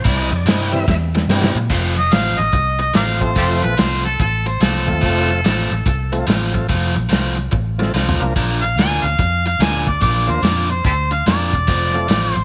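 A thick, lightly overdriven tonewheel organ through a slow rotary speaker and a biting, picked overdriven guitar riff open this swaggering, rollicking electric blues shuffle, quickly joined by a round, foam-muted fingered bass and a dark, punchy soul drum kit whose fill at 0.9 s ushers in an up-front vintage harmonica solo at 2.0 s, full of scooped notes, tongue slaps and light vibrato, all set in a small, lightly reverberant room.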